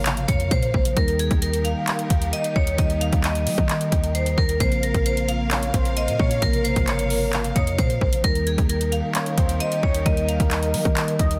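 Dense, heavily limited and lightly reverberant, this eerie, melancholic half-time hip hop and trap excerpt at 132 BPM pairs a bright, ringing hard-mallet vibraphone melody with digital delay against a mellow tine electric piano, distant bowed strings with portamento, a deep, boomy 808-style bass and an up-front trap kit of hard-clipped kick, metallic hi-hats and handclaps, while a velvety, detuned synth lead with chorus, tremolo and delay joins at 5.5 seconds over Bbmadd9 and Eb chords.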